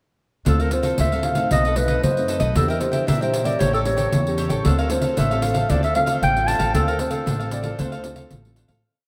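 A straight 4/4 samba and choro pulse at 115 BPM is carried by a jingly, compressed, saturated pandeiro sitting up front, with an upright bass playing a pizzicato samba bass figure in a woody, steel-strung tone. In D minor, this short, complete piece has a bittersweet, nostalgic mood. A dark clarinet leads with a jazz-style, motif-based solo melody built in sentence-like phrases, using subtone, light vibrato and scooped notes for a vintage colour. Beneath it, a crisp cavaquinho is picked and strummed in sixteenths, while a full-bodied nylon-string guitar fingerpicks thumb bass and syncopated plucked chords with a deep classical character. The harmony moves from Dm7 through B7b9, Em7b5 and A7b9 before returning to Dm7, all within a single section. Everything is bathed in a wet cathedral reverb that places the group in a vast, echoing space, and the music fades out from 6.7 s to its close at 8.8 s.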